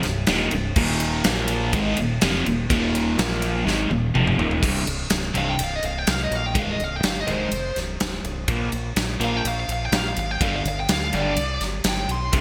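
A cranked, double-tracked stack guitar plays a bright, overdriven, phaser-tinged riff in C minor from the start, together with a growling, overdriven fingered bass and a big, up-front rock drum kit with a punchy kick and gated reverb, driving an aggressive, heavy hard rock groove at 124 BPM in a bright 1980s-style digital production, with a drum fill at 3.7 seconds leading to a bluesy, distorted lead guitar that enters at 5.4 seconds with a high, delay-laced solo over chords moving from C5 through Ab/C and Bb5 to G5.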